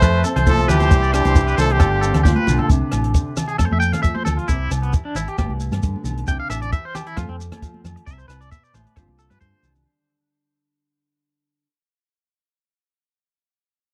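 A clear trumpet with a soft attack and light vibrato leads this carefree, danceable highlife guitar band passage in C major, carrying a jazz-style melody up front while a distant, roomy trombone adds a second line beneath it until 2.3 seconds. At 134 BPM in 4/4 with a gentle sixteenth-note swing, a round, punchy hollow-body electric bass sits up front alongside a dry, compact cocktail kit with a high-tuned snare and tight kick. Agogo bells ring in the background, joined by a grainy shekere and thin-skinned, high-tuned congas played with soft hands. A small, dark fingerpicked nylon-string guitar comps throughout, and a reedy vintage combo organ holds heavy-vibrato chords briefly at the start. The twangy electric guitar, clean and picked with tremolo and tape echo, spins arpeggios from the outset, and from 2.7 seconds a clean electric guitar solo emerges as the music fades out over chords such as Csus2, Dm11 and Amadd9. 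The close, dry 1970s-style studio sound keeps every part intimate and crisp.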